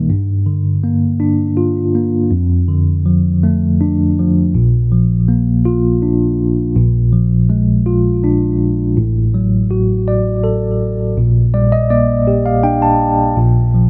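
A folk excerpt in 3/4 at 81 BPM in Bb major, tuned to A4 = 444 Hz, with an intimate, hopeful mood carried by a solo tine electric piano that plays alone from 0.0 to 13.9 seconds across a range of A1 to A5. The piano sounds clean and up front through a combo amp, shimmering with medium tremolo and trailed by tape echo, captured by close, detailed microphones in light reverb. The harmony moves from Gm7 and Dm/F into a second section at 4.5 seconds that passes through Bb, Bb7, D/A and Gm/Bb before settling on Bb5.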